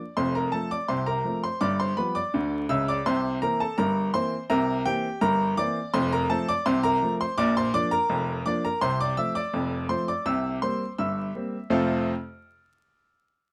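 Moving in a straight 2/4 at 83 BPM, this short ragtime piano piece has a playful, jaunty bounce, cut from a longer work. A single upright piano carries everything alone from 0.0 to 12.1 seconds, ranging from F1 up to F6, its tone clear, woody and polished, sitting up front in the mix. The harmony stays in F major, stepping from F through G7 and C7, then on to Bb, F over C, and C7 before landing back on F at 11.7 seconds, where a brief new section begins. Close, detailed microphones capture the instrument with a light touch of reverb, while a vinyl crackle lends the sound an aged, nostalgic surface. The tuning sits slightly low, at A4 = 439 Hz.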